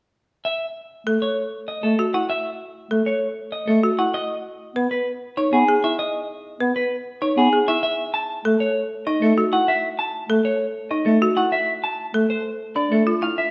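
Classical minimalist pattern music in 6/4 at 195 BPM, this meditative yet urgent excerpt in F# dorian sets a clean, hollow-bodied semi-hollow electric guitar melody over woody, percussive arpeggios from a folk marimba struck with hard mallets and a mellow, distant bass clarinet accompaniment. The guitar opens at 0.5 seconds, with clarinet and marimba joining at 1.1 seconds, as the harmony moves through F#m7, a rootless C#m7, A5 and Dm. A recital hall reverb lends the ensemble a resonant space, while the marimba's bright, rustic bars stay dry and up front.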